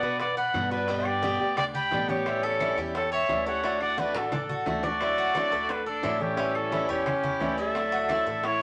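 Bathed in a wet studio reverb, this relaxed snippet of Cuban son and guajira in D major moves at 175 BPM, with a punchy, vibrato-laden trumpet leading up front over a breathy, chiffy jazz flute second line, boxy picked swing-style acoustic guitar, metallic double-stringed tres arpeggios, thumpy gut-string upright bass, ringing low-tuned congas, tight high-tuned bongos and very quiet woody claves, before a drum fill from 4.2 to 5.0 seconds carries it into a second section built on Dadd9 and A7.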